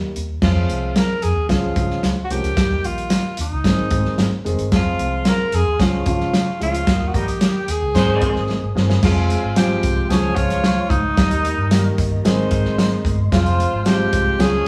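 Uptempo 1960s-style soul with a danceable, warm feel, built on a dry, muffled drum kit with tight kick and dark cymbals, a round, foam-muted fingered electric bass, a woody, boxy upright piano with audible action noise, very quiet bright congas, and a breathy tenor saxophone up front carrying the melody with scooped notes and vibrato, joined at 4.7 seconds by a soft, flute-like tonewheel organ with key click and slow rotary speaker in the background and at 7.1 seconds by a vintage horn section playing a second line, all in a moderate stone room as a band playing live, with a band accent and drum fill leading into a new section at 9.0 seconds.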